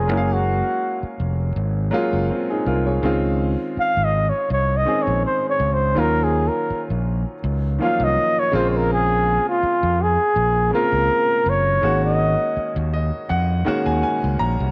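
A gently swung sixteenth-note groove in 4/4 sets a lush, 1970s-style soul mood in this short fragment cut from a longer piece. A breathy flugelhorn carries the melody as a solo from the start, its mellow, whispered tone and vibrato sitting up front with an intimate, jazz-style feel and a slapback echo trailing each phrase. Underneath, a clear grand piano supplies smooth, vintage-tinged accompaniment, while an overdriven fingered electric bass gives the low end a round, amped character. The harmony moves through Gbmaj7, Dbmaj7, Ebm7 and Bbm7 before settling on Ab7sus4. The flugelhorn stops at 12.7 seconds, and the piano plays a fill from 12.6 seconds to the close, all within light reverb and a small-room ambience that keeps the sound warm and close.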